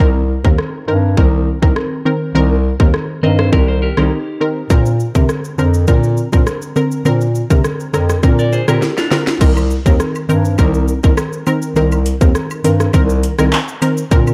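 Dancehall in C minor at 102 BPM, bouncy and hypnotic, built on an up-front electronic drum kit with a tight kick, sharp snare and metallic hats under overdrive, while a breathy, mellow bass clarinet with vibrato carries the low line. Detuned sawtooth and pulse-wave chord stabs with a chorus effect pluck out Cm7 and Bbadd9, and a clean, dark electric guitar adds picked arpeggios from 3.2 seconds. After a drum fill at 8.8 seconds, a close, dry woodblock and cabasa sit in the background from 9.6 seconds in this dark production with little reverb.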